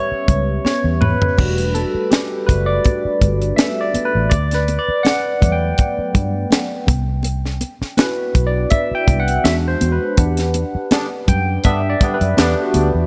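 Lush 1970s-style soul in E minor, this smooth, cinematic fragment of a longer piece moves at 82 BPM in 4/4 with a gentle swing on the sixteenths. A barky, bright tine electric piano carries a solo throughout, its clean tone run through a combo amp with a phaser coloring it, sitting up front alongside a dark, round, foam-muted fingered electric bass that sounds amped and punchy. A tight funk drum kit with bright cymbals, a high-tuned snare and a tight kick drives the groove, working in a fill at 0.7 seconds, while soft-handed, thick-skinned congas sit close and dry in the background. Harmony drifts from a rootless A7 through Em11, Gmaj9/D and Cmaj9#11 to E7 before settling on Em9, where the band hits an accent at 10.2 seconds. A mellow horn section in jazz style, with light vibrato and octave doubling, adds stabs from 10.9 seconds, all framed by light reverb and a studio ambience with a softened top end.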